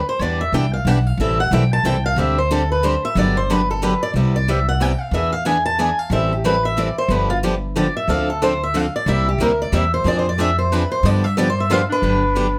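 Captured with close, detailed microphones and a light reverb, this lively excerpt of acoustic string swing in three has a crisp, intimate sound. A picked swing-style guitar carries the melody up front with a boxy tone and fresh strings, while a second swing-style guitar, brighter in character, picks out accompaniment beneath it. A full-bodied steel-string dreadnought sits in the background with audible finger squeak, and it is marked as taking a solo through to 12.0 seconds. The upright bass, plucked on gut strings, sounds woody, dark and thumpy near the front of the mix. The harmony moves from minor seventh and suspended chords into a new key centre at 4.1 seconds, passing through chords such as Fm6 and G7 before settling on Gmaj7. At 11.7 seconds a distant, roomy clarinet with vibrato slips in briefly, playing a punchy, forceful second line in jazz style just as the passage closes.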